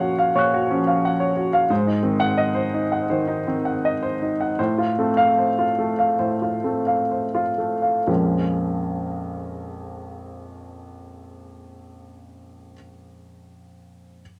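A rubato 4/4 pulse that slows down from 0.3 to 8.1 seconds opens this melancholic, wistful neoclassical minimalist piano excerpt, cut from a longer piece. A solo grand piano plays throughout, clear and intimate with audible action noise, sitting up front and spanning Bb1 to Gb6, while a short, wet club reverb surrounds it. Chords move from Gbmaj7/Bb through Ab7 and F/A before settling on Bbm7 at 8.1 seconds as a new section begins.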